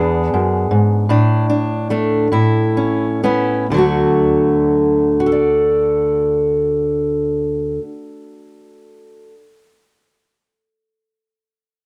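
A fingerpicked steel-string acoustic guitar sits up front from the very start in this intimate, tender folk fragment in a straight 6/8, slowing through its opening moments over E7, Asus4 and Aadd9 before settling onto D at 3.7 seconds, its concert-style tone ranging from D2 to D5 and captured by close, detailed microphones with light reverb until it breaks off at 9.4 seconds as part of a longer piece.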